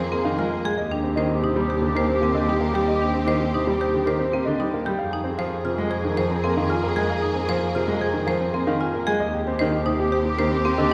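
A reverberant concert hall wraps this bright, propulsive stretch of minimalist classical pattern music, cut from a longer piece and moving at 114 BPM in a straight 4/4 in Eb major. A dark, mellow grand piano carries the melody, intimate and slightly worn, with its action noise audible, while a distant, roomy clarinet sits in the background on a second line. A second concert grand, clear and natural with deep bass and short sustain, supplies the accompaniment beneath, and a marimba struck with hard mallets adds woody, percussive arpeggios on rosewood bars. A lush symphonic violin section holds smooth, focused sustained chords with vibrato, and a single bowed double bass stands up front with a clean, vibrato-tinged bass line. The harmony alternates between Bb7sus4/F and Eb6, and every part plays throughout the roughly 10.9 seconds.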